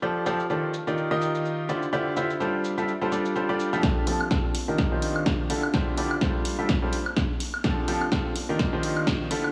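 Joyful and uplifting, this piano house excerpt sets a brilliant, intimate baby grand riff with audible action noise and long sustain, pumped by sidechain and colored by a low-pass filter and digital delay, over an analog drum machine's filtered hi-hat, shaker, snare and woodblock, all moving through F69, Ebmaj9, Dm11 and G9sus4 in a lush hall reverb, until a punchy electronic kick drum arrives at 3.8 s to drive a build-up with a drum fill and a filter sweep on the piano.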